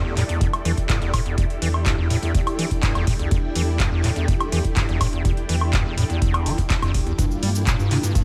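Lightly reverberant digital ambience frames this raw, gritty acid house excerpt, where a squelchy, overdriven square-wave acid bass riff and a round, dark analog bass pump under sidechain beside a lush vintage string machine with phaser and ensemble chorus and a cloudy, evolving granular pad, while a booming analog drum machine with metallic hats, handclaps, shaker and woodblock joins at 0.2 seconds and a deep, tape-warm electronic kick enters at 0.4 seconds over chords moving from Em7 to Gm7.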